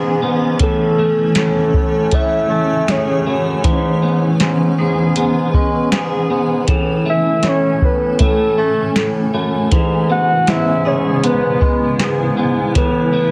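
Dream pop with a dreamy, floating mood, this excerpt from a longer piece drifts between C#m7 and Amaj7 as a cloudy, blurred granular pad holds sustained chords in its own reverb. A slightly broken-up electric guitar plays up-front arpeggios through ensemble chorus and delay, while a mellow, distant bassoon with light vibrato carries the bass line. From 0.6 seconds a round, dark octave-layered synth lead sings the melody through chorus, phaser and delay, over a soft analog rhythm box with a deep kick, tonal snare and metallic hi-hats, all set in a moderate plate reverb with a heavily compressed, radio-like sound.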